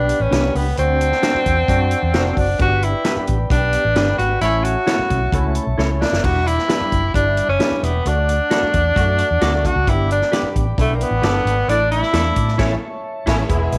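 A small, lightly reverberant room frames this uptempo 1960s-style soul excerpt in D major at 132 BPM, uplifting and danceable, with a clear, up-front tenor saxophone carrying the melody over a barky tine electric piano with ensemble chorus and a soft, flute-like tonewheel organ holding chords through a slow rotary speaker. A dark, round, foam-muted fingered bass sits up front beside a distant, roomy big-band drum kit with a punchy kick, while a clean electric guitar adds phased, slapback-echoed stabs in the background. A mellow horn section doubling in octaves joins the band accents at 4.4 and 11.7 seconds, with a drum fill closing the first accent before the phrase resolves through Asus4 to A.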